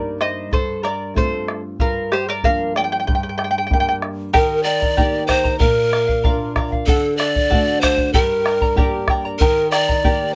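A breathy bamboo pan flute with vibrato and a soft, chiffy attack carries the melody up front from 4.3 seconds in this wistful, earthy Andean folk excerpt in G minor at 95 BPM, over a bright, shimmering fingerpicked charango, a boxy thumb-plucked nylon-string guitar and a deep, dark bombo, all set in light reverb with close, detailed miking.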